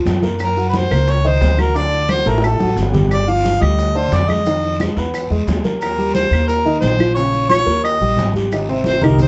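Afro-Cuban jazz in a danceable, lively mood: a mellow harmonica carries the solo melody up front from 0.4 seconds, with light vibrato and scooped notes, over a warm, long-sustaining upright piano and a growly, woody pizzicato upright bass. In the background sit thick-skinned congas played with hard hands, round low-tuned bongos, woody claves, a raspy guiro and grainy maracas, with a drum fill at 2.3 seconds. A moderate club reverb and the worn, warbling sound of old cassette tape, with its pitch drift and dull top end, colour this short excerpt from a longer piece.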